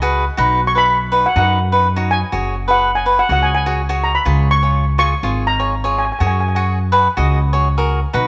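Cavaquinho and upright bass open together, the cavaquinho's bright, crisp picked chords sitting up front beside the woody, thumpy pizzicato of the gut-strung bass, setting a bouncy, festive calypso groove at 124 BPM in F# major. At 0.7 seconds a steel pan enters with the melody, its metallic, shimmering tone struck with hard rubber sticks and carrying a boxy small-room quality. The harmony moves from B to F#sus2, then to C# and back to F#sus2, keeping the straight 4/4 feel festive. The pan drops out at 6.6 seconds while the cavaquinho and dark, low bass carry on to the close of this short cut from a longer piece. A moderate echo-chamber reverb with a 2.1-second tail gives the whole track a lively, resonant space.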